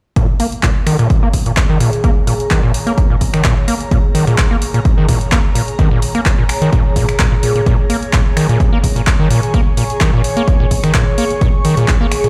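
Driving and gritty, this acid house excerpt runs at 128 BPM in 4/4 with a light 16th-note swing, sitting on a single Bb minor seventh chord in Bb minor pentatonic. An up-front, squelchy overdriven acid bass riff with a resonant filter sweep, tube saturation, 12-bit sampler grit, delay and sidechain pumping drives from 0.2 seconds alongside a punchy, tape-toned electronic kick and a dry, overdriven analog drum machine of finger snaps, handclaps and hi-hat. From 1.0 seconds an ethereal, airy pad with detuned unison, ensemble chorus, phaser and its own pumping fades in slowly above, all heard as if played through a big sound system in a bare room with large studio reverb.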